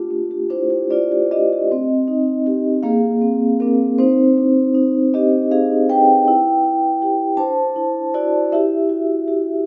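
Hypnotic and reflective, this short cut from a longer contemporary classical piece for solo vibraphone moves at a slow 52 beats per minute in a straight 6/8, its soft mallets drawing a mellow, dark, ringing tone with medium motor vibrato from a range spanning A3 to A5. The instrument sits up front yet is heard from further back in a stone room whose wet reverb lingers about 1.1 seconds, softening the top of the sound. Its harmonies drift through colored chords such as Dmadd9, Cm, Bb9 and Emadd9, shifting to a new section at 1.7 seconds and continuing until the fragment ends at 9.7 seconds.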